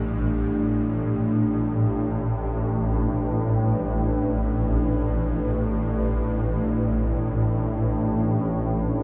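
A swarming, detuned drone sits up front from the start and a deep, moody sawtooth pad with chorus holds sustained chords around an A9sus4 above it, both with slow attacks, in this cavernous, dark ambient drone in free time, tuned to A4 = 445 Hz, cut from a longer piece and soaked in a huge reverb with a cassette-tape haze.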